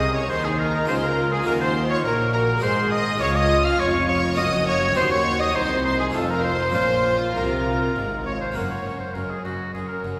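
A stormy, dramatic passage from a baroque-style concerto movement in triple time, cut from a longer piece, where a clear oboe sings the melody with light vibrato alongside a lush, focused violin section soaring high above. A chamber violin section with a soft attack traces a second line with an intimate sul tasto touch, while expressive violas with portamento and a brilliant harpsichord tucked in the background fill the accompaniment. Distant cellos and a rich, bowed double bass section anchor the low end, all bathed in a wet church reverb as the music turns to a new section at 8.6 seconds.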